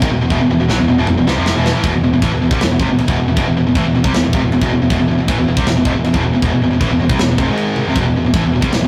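Heavy metal with a relentless, dark mood, this cut from a longer piece has two distorted electric guitars playing picked riffs up front throughout, one with a high-gain edge and the other tight and bright. Beneath them, a growling picked electric bass with overdrive adds grit through a direct and amped tone. An acoustic metal kit with a tight kick, a medium-tuned snare, toms and a china cymbal sits mid-forward in a big room, opening with a fill from 0.3 to 1.8 seconds and adding another at 7.8 seconds. The harmony moves from E to E5 power chords, briefly rising to G#5 before returning to E5. The rough rehearsal-room recording carries saturation and a moderate studio reverb that give the short passage a raw, live feel.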